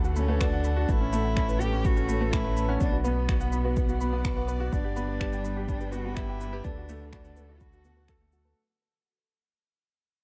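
A dark, studio-reverberant production frames this short cut from a longer piece of piano and strings electronica, which opens straight into a drop and begins to fade out at 3.4 seconds. A clear, worn, present concert grand carries the riff with delay, over a round analog bass that pumps with sidechain and an overdriven, layered electronic kick that enters at 0.4 seconds. An electronic shaker and finger snaps with a tape-warm, small-room character add texture. Behind them, a soft pluck with chorus, delay and a moving notch traces arpeggios, while a distant, lush symphonic string section holds sustained bowed chords. A woody cello with vibrato sings the melody from 0.2 seconds, touched with delay, as the harmony moves from D through Aadd9, Bm and G back to D, giving the whole a cinematic yet intimate mood.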